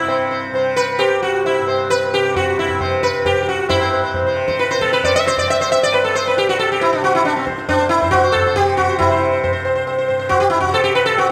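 Hindustani classical music in raga Yaman, rooted on C with tuning at A4 = 439 Hz, moves in a meditative, radiant 3/4 at 135 BPM, speeding up across this short excerpt cut from a longer piece. The sitar carries the melody up front between C4 and E5, its plectrum-plucked tone bright and buzzing, with sympathetic strings adding a shimmering halo. Beneath it the tanpura holds a softly plucked drone from C2 to C3, sitting well back in the mix with its own buzzing glow. The tabla enters at 0.1 seconds, high-tuned and ringing, its sound compressed and saturated. A new section begins at 3.7 seconds and runs to the end at 11.3 seconds, all set in a recital hall reverb with a 1.4-second decay.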